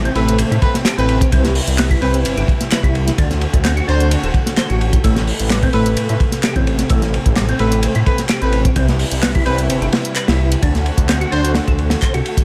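A small, close room gives this raw, energetic breakbeat excerpt a tight, gritty sound, with a crunchy acoustic breakbeat kit and a deep, rumbling detuned saw bass both sitting up front. At 129 BPM in straight 4/4 and A dorian, the saturated kit drives kick, snare, hi-hat and dark ride cymbals with a rolled-off top, while a layered, tape-warmed electronic house kit adds handclaps and hi-hat beneath it. The bass, thickened by tube saturation, carries the low end over chords of Amadd9, Cmaj7 and D7. A round, percussive tonewheel organ plays a riff with key click, chorus vibrato, fast rotary speaker, saturation and digital delay, and a jazz-style horn section punctuates with warm stabs through its own delay. In the background, a dark studio string section holds soft-attack sul tasto chords with light vibrato and a sidechain pumping feel. A barely audible electronic downlifter opens the passage and is gone by 1.3 seconds.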